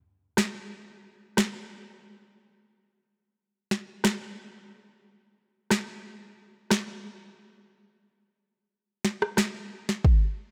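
Dancehall with a bouncy, hypnotic straight feel, this excerpt from a break centres on an electronic, overdriven afro-pop drum kit that enters at 0.4 s and runs to 10.2 s, its deep kick, rim click and sharp snare sitting up front in a produced mix lightly touched by reverb.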